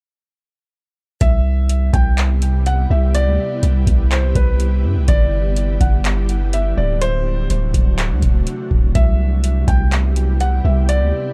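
A half-time groove at 124 BPM in 4/4 drives this short fragment of atmospheric cloud-rap, built on a booming analog drum machine whose deep kick, metallic hi-hats and handclaps sit up front with a tape-like glow from 1.2 s. Alongside it, a long 808-style bass hums in sine-pure tones with a fast attack that then decays, mellow yet prominent. A felt-muted upright piano carries the melody in a soft, intimate voice, its thin felt and audible action noise touched by delay. At 1.7 s an ethereal, airy pad of detuned sawtooth and triangle unison fades in with slow attack and long release, shimmering through ensemble chorus and its own reverb while sidechain pumping makes it breathe. The chords move from Cmaj7 to G6 and D7 before returning to Cmaj7, and the dark, close production keeps the blissful, dreamy mood hovering until 11.3 s.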